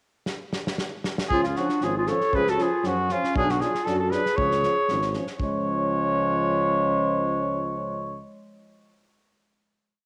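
A swung 2/4 pulse at 118 BPM opens this short, fiery Balkan brass band piece, with a loose acoustic drum kit of tight kick and medium-tuned snare playing a two-stick fill through the pickup bar from 0.3 seconds. At 1.3 seconds the band arrives in C# phrygian dominant. A mellow trumpet sits up front with a motif-based, song-like melody, and a dark clarinet shadows it with a harmony line mostly in thirds; both sound distant and roomy. Beneath them, a French horn with light vibrato and a soft-edged euphonium hold the chord pulse in the background. A deep tuba with tube saturation plays root and fifth on the main beats through the restless C#, Bm and back to C# progression. The trumpet, clarinet, euphonium and French horn carry a cassette-tape grain, the whole band sits in a lush hall reverb with small-room ambience and a homemade feel, and the piece closes on a held final chord from 5.4 seconds.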